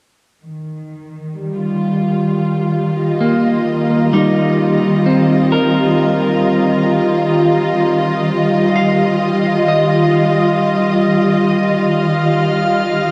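A warm studio string section holds soft, bowed Ebadd9 chords up front from 0.4 seconds in this luminous, peaceful ambient excerpt at 65 BPM in 3/4, joined at 3.2 seconds by bright, twangy clean electric guitar arpeggios with tape echo and, near the close at 11.9 seconds, a glassy drifting-harmonics texture with chorus, all bathed in a wet shimmer reverb.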